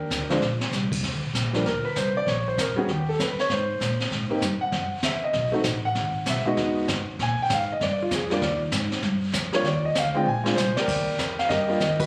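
A baby grand piano with long sustain and a woody pizzicato upright bass open this relaxed, warm jazz piano trio in Eb major at 195 BPM with a swung 4/4 feel, joined at once by an up-front brushed drum kit with a high-tuned snare, punchy kick and rolled-off top that plays short fills, while the piano takes a solo from 1.0 to 10.9 seconds over chords moving from Ebmaj7 through Abmaj9, B7 and Bb9, all caught on a phone in a club-like room with light reverb and compression in this snippet cut from a longer piece.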